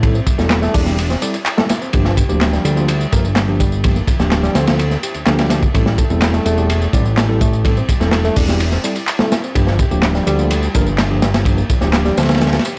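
A crunchy breakbeat drum kit sits up front, its tight kick, medium-tuned snare, dark cymbals and rolled-off top sounding saturated from a small room, with a fat, nasal, detuned sawtooth bass just as forward and electronic tambourine and handclaps adding a tape-warm analog layer. In this funky, energetic breakbeat piece at 126 BPM in straight 4/4, a barky, lightly overdriven reed electric piano plays a riff through its built-in speakers with low-pass filtering and analog delay. A bell-like tine electric piano adds clean stabs with delay of its own over Am7 and Gm7 chords, in a dry, gritty cassette-tape sound cut from a longer track.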